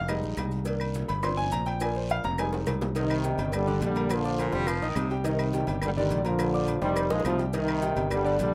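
Danceable and driving, this salsa excerpt in C minor runs at a brisk 210 BPM in straight 4/4, with a clear grand piano featured for the first 3 seconds, its intimate tone carrying audible action noise, over a dark, round, punchy fingered electric bass and a drum fill. At 3.0 seconds an up-front trombone section enters with a clear, punchy melody and light vibrato, and a breathy, whispered baritone saxophone adds a brief second line at 4.4 seconds; plate reverb colours the piano, trombones and saxophone. Behind them sit ringing agogo bells and timbales, woody claves, tight high-tuned cowbell and bongos, distant, very quiet low-tuned congas, a raspy guiro and grainy maracas, all in a rough home demo mix with light reverb.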